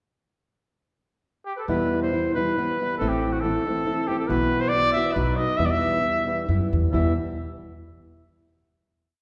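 A 3/4 at 137 BPM with a swung, rubato feel carries this brief, passionate and dramatic mariachi piece in E minor, opening with a trumpet pickup at 1.5 seconds before nylon-string guitar and upright bass join at 1.7 seconds. The trumpet sings a free, classical-style solo melody with light vibrato and a soft attack, distant yet up front, over thumb-plucked sixteenth-note strumming in open chord shapes and a woody, thumpy pizzicato bass playing root and fifth on the main beats. A roomy scoring-stage reverb that feels like a church or concert hall surrounds the progression from Em through Am, Bsus4 and B back to Em, closing on a final chord at 6.9 seconds.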